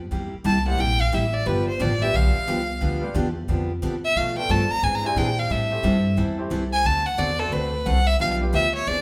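Western swing country at 178 BPM in G mixolydian, down-home and swinging, cut from a longer piece and played live in one room with a wet large studio reverb. A woody, thumpy pizzicato upright bass with gut strings sits up front from the start, joined at 0.1 seconds by a bright, full-bodied picked jumbo acoustic guitar, while a clear, smooth bowed fiddle with light vibrato carries the melody as a solo from 0.5 seconds. An upright piano stays in the background as the chords move from C7 and G7 through Bm7b5, E7alt, Am7 and D7 back to G7.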